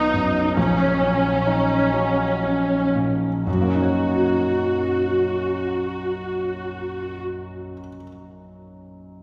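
A grand piano, a viola section and a concert harp open together in this hopeful, uplifting fragment of a cinematic film score, set in F# major and 6/8 at a rubato 38-48 BPM that slows through the first 3.5 seconds. Up front, the piano sounds clear and intimate, its action noise audible and its notes sustaining long, while the bowed violas bring a lush, intense ensemble tone with vibrato and the fingerpicked harp rings out in arpeggios. A church reverb of 3.3 seconds surrounds the parts as the harmony moves from B6 to F#6; the violas stop at 7.2 seconds, the harp at 8.1 and the piano at 9.2.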